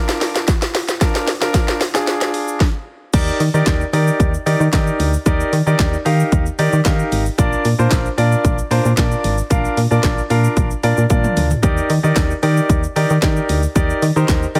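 A straight 4/4 house drum kit at 113 BPM drives this upbeat, summery dance-pop excerpt in Eb major, its punchy kick, cracking snare, handclaps, hi-hat, shaker, crash and toms sitting up front, with fills during the opening build-up and again at 11.1 seconds. A clear, intimate concert grand piano carries the Bb and Ebmaj7 chords through sidechain pumping and a low-pass filter, its action noise audible. At 3.1 seconds the drop arrives with a round, dark FM bass that pumps in time. The whole mix is dry and heavily compressed, with a radio-ready sound.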